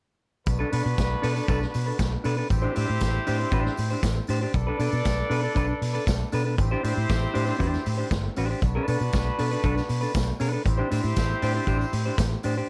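A dark, lightly reverberant studio sound frames this driving, danceable disco groove cut from a longer piece, where a round, foam-muted fingered bass sits up front beneath a gritty, saturated vintage drum kit with punchy kick and hi-hat, a clean hollow-body electric guitar comps over alternating Bm7 and Am7 chords, a tight horn section with light vibrato and octave doubling fires stabs through slapback echo, and a jingly tambourine glitters distantly in the background from 0.5 seconds onward.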